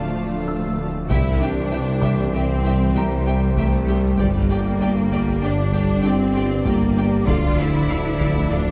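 A thick, swirling detuned saw bass with a phaser sits under this short, vast and futuristic cue from a hybrid orchestral and electronic film score, moving in 5/4 over chords of Dm, C and Gm. A warm analog pad with chorus holds sustained chords alongside a very quiet, ringing harp-like synth pluck playing arpeggios. A rich cello section and a double bass section anchor the low end with lush, bowed vibrato, while a viola section adds distant accompaniment and a barely audible French horn section holds soft chords. At 1.1 seconds a violin section takes up a soft-attack melody alongside a second violin line, as a clear tuba and a heavy-stick taiko ensemble enter in the background. A mellow, felt-muted upright piano with audible action noise drifts through tape echo from 0.5 to 7.3 seconds, and the whole mix is heard from further back in a wet scoring-stage reverb.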